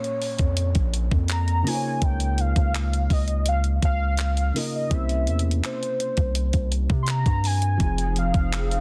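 Set in a digital ambience with a dense, heavily limited modern master, this brief cut from a longer contemporary R&B piece moves at a straight 83 BPM in 4/4 with a longing, sensual mood, over chords running from Bbm7 through Db6 and C7b9 to Fm7. A crisp 8-bit drum machine sits up front with a thumpy kick, handclaps, hi-hat and a soft-clipped snare, while a deep, sine-like 808-style bass enters at 0.4 s and a felt-muted upright piano adds dark, intimate accompaniment with audible action noise. A velvety, detuned sawtooth synth lead carries the melody with chorus, digital delay and vibrato, an electronic downlifter sounds in the background until 2.0 s, and a hollow, flute-like pad with ensemble chorus arrives at 7.8 s.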